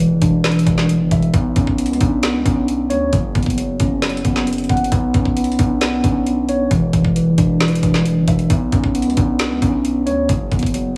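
A roomy recital-hall reverb wraps this melancholic yet hard-hitting trap excerpt in B minor at 134 BPM with a half-time feel, where a mellow, clean tine electric piano plays up-front arpeggios through a low-pass filter and tape echo over Em7, Bmadd9 and F#sus4 changes, a saturated, aggressive 808-style bass with a noise layer and fast attack anchors the low end, and a produced electronic kit of knocking kick, woody snare and metallic hats punches through.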